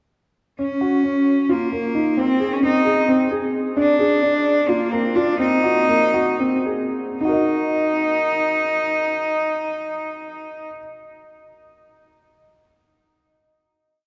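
Contemporary chamber music in 7/8, this short complete piece moves at 213-265 eighth-note beats per minute in Eb dorian, tuned to A4 = 438 Hz, with a hypnotic, restless mood. A dark, mellow grand piano with a vintage character sits up front from 0.6 s, repeating an ostinato of arpeggios between Bb3 and Eb5. A single bowed cello enters at the same moment, its bright, nasal, earthy tone carrying light vibrato as it spins a free, unrepeating melody between Bb3 and Eb4. The harmony passes through Ebm9 and Ab/C before the tempo begins to slow at 3.8 s over Bb7 and Ebm6, and the piece settles on a final Ebm chord at 7.2 s. A cathedral reverb with a five-second decay places the duo in a vast, echoing space, and its long tail lingers after the cello and piano stop around 10.7-10.8 s.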